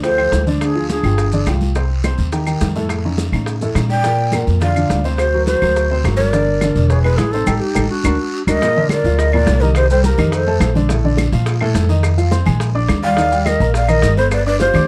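A dark, lightly reverberant production frames this fiery, driving Afro-Cuban jazz excerpt at 210 BPM, where an up-front, breathy bamboo shakuhachi with plate reverb and vibrato carries the melody in intermittent phrases, shadowed by an airy, hollow concert flute in the background, over an intimate baby grand piano with audible action noise, a thumpy pizzicato upright bass, a raspy guiro, and a background bed of tight high-tuned bongos, bright congas, woody claves and grainy maracas, with a band accent and drum fill from 7.5 to 8.6 seconds.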